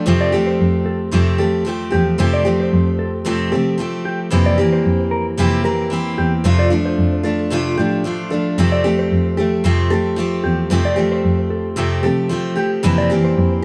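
A warm, softly reverberant mix carries this carefree, easy-going acoustic pop excerpt in F major, moving at 113 BPM in 4/4 with a light sixteenth-note swing and tuned to A4 = 442 Hz. A bright, full-bodied picked steel-string jumbo guitar sits up front with the accompaniment, while a single bowed cello supplies a woody bass line with vibrato. Far behind them, a clean, compressed, finger-played electric guitar adds high arpeggios over a gentle cycle of Fadd9, C7/F and Dm7/F.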